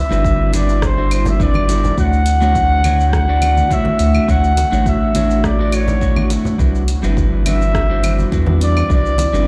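Warm and blissful, this short cut from a longer sunset chillout piece moves at an easy 104 BPM in a straight 4/4, centred on D major as the harmony shifts from Cmaj9#11 to Dmaj7 at 2.0 seconds and back to Cmaj9#11 at 6.6 seconds. A distant, roomy flugelhorn carries the melody up front in a classical style, its line held between C5 and G5 and trailed by tape echo. Beneath it, a round, deep analog bass with tube saturation sits prominently, nasal and dark with a fast attack, while a slightly broken-up electric guitar adds picked, compressed accompaniment. An airy, breathy pad drifts very quietly underneath with slow-attack sustained chords, its detuned layers coloured by chorus and phaser. The rhythm comes from a tape-warm deep house kit of claves, hi-hat, rim click and shaker, a layered electronic kick in the background, and very soft, bright congas played with gentle hands, all set in a stone room reverb as though heard through a big sound system in a bare space.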